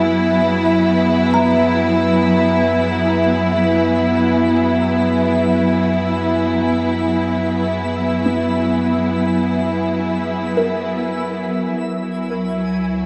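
Floating in free time, this weightless, luminous ambient fragment rests on a lush, bowed string section holding sustained chords up front, beneath which a round, deep analog bass fades in, a twinkling granular texture with shimmering reverb glimmers in the background, and a woody, hollow kalimba joins at 1.3 seconds with tape-echoed arpeggios, all set in a vast cathedral-like space with a cassette-tape grain as the harmony moves from F#7sus4 to C#m7 at 11.7 seconds.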